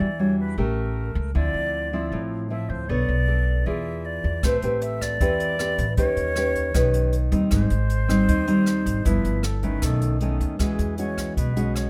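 A straight 4/4 bossa nova groove at 156 BPM carries this breezy, sophisticated excerpt, cut from a longer piece, with a nylon-string guitar thumb-plucked up front in a classical manner across its whole length. Pizzicato upright bass sits low beside it, woody and thumpy, while a reedy concert flute with a straight, tongued tone takes a quieter second line between G#4 and E5. At 4.4 seconds a brush-played jazz drum kit joins with hi-hat, rim click and a boomy kick, its sound airy and polished in a studio room. The harmony moves through rich jazz colours, from Em9 and A7b9 through Ebaug7 and Abmaj7 to G13 and B9, before settling on E69 as a brief new section begins at 10.6 seconds. Light reverb gives the ensemble a gentle sense of space.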